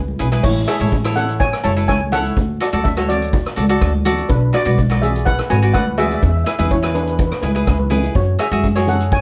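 A woody pizzicato upright bass opens this bouncy, carefree calypso fragment, joined almost at once by ringing, high-tuned congas set back in the background, crisp picked cavaquinho, and a roomy street-band drum kit with a boomy kick, dark cymbals, hi-hat and rim clicks, before a shimmering, airy double-seconds steel pan played with medium rubber sticks takes the melody from 0.4 seconds over a light reverb and chords moving from A through D, Bm and E to a closing F#sus2.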